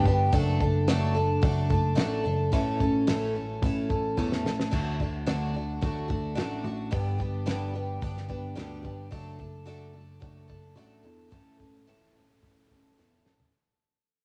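Folk rock with a heartland rock flavour, this short cut from a longer piece has a warm, open-road mood and a steady, straight 4/4 feel. A picked twelve-string acoustic guitar sits up front, its jumbo body giving a full, shimmering, octave-doubled sound that carries the chords, with a cassette-tape character. Beneath it, a picked electric bass adds a round, punchy, direct low end. A damped 70s drum kit plays dry, with a fat snare, tight kick, dark cymbals and a rolled-off top, also colored by cassette tape, and it drops in short fills at 4.2 and 13.0 seconds. The whole passage is fading out, and the studio ambience of a home cassette recording gives it an intimate, lived-in feel.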